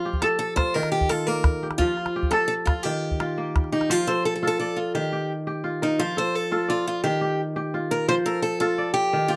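Up-front kora arpeggios ring out with a crisp, fingerpicked sparkle, carrying this flowing, warm short cut of West African string and xylophone music in a straight 12/8. A bright, boxy parlour-style steel-string acoustic guitar with fresh strings picks the melody alongside it, while a deep, close and dry calabash drives the opening section before falling away at 3.9 s. The two strings then continue together over a steady sway between F and Eb, captured by intimate, detailed microphones with a touch of light reverb.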